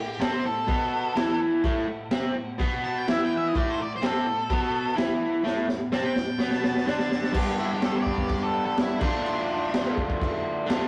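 An octave-fuzz lead guitar and an overdriven rhythm guitar open this raw, swaggering garage rock fragment together, with a crunchy breakbeat kit joining a moment later. The double-tracked rhythm guitar sits up front, picked and compressed, playing a low riff over Am before the harmony moves to G and then Dm. Above it, the lead carries a dark, distorted melody, its picked lines trailing through analog delay. The acoustic drums are gritty and saturated, with a punchy kick, a high-tuned snare, shadowy cymbals and a rolled-off top, and a drum fill from 5.4 to 7.4 seconds carries the music into a new section. A stone room lends moderate reverb, the rough rehearsal-room sound adds saturation, and the lead drops out at 9.9 seconds just before the cut.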